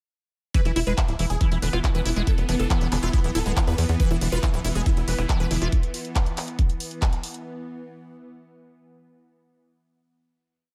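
A knocking electronic kick sits up front in a four-on-the-floor pulse, driving this short, hypnotic psychedelic trance piece at 139 BPM in straight 4/4. The whole piece is a single drop over an E5 chord, opening at 0.5 s as a programmed drum kit adds bright closed and open hats and a clap backbeat, with both drum parts re-recorded in a small room. Beneath them, a tight, punchy sequencer bass rolls in sixteenth notes with sawtooth and square-wave plucks. A squelchy, resonant acid bass runs a 12-step loop that drifts against the bar, coloured by chorus, tape echo and sidechain pumping. A detuned unison supersaw stab repeats a sixteenth-note riff over a pedal note through phaser and tape echo, while a very quiet, metallic FM wobble bass adds short, saturated phrases. From 1.4 s an evolving wavetable pad drones in the background with phaser and built-in reverb, lasting until 7.5 s and outlasting the other parts.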